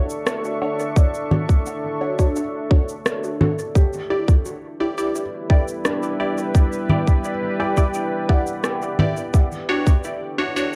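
Over electronic shaker, rim click and congas carrying overdrive and dub echo, mellow phased dub chord stabs, a soft felt-muted upright piano playing arpeggios through 12-bit sampler grit and echo in the background, and a deep, warbling, detuned pad holding chords that move from Dmaj7 to Em7 and back to Dmaj7, a tight, overdriven electronic kick enters up front from 1.0 to 10.0 seconds in this hazy, spacious ambient dub excerpt at 86 BPM in E dorian, all in a dark production with light reverb.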